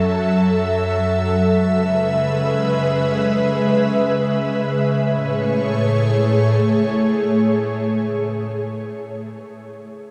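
An ethereal, airy pad plays alone from 0.0 to 9.2 seconds, its detuned sawtooth and triangle layers thickened by ensemble chorus and built-in reverb, with slow attacks, long sustains and a mellow, up-front presence. This blissful, floating hip hop fragment in A major drifts in free time, moving from F#m7 to C#m7 before settling on Amaj7 at 5.0 seconds. A huge ambient reverb with a 7.4-second decay surrounds the pad, giving the passage a weightless, suspended quality.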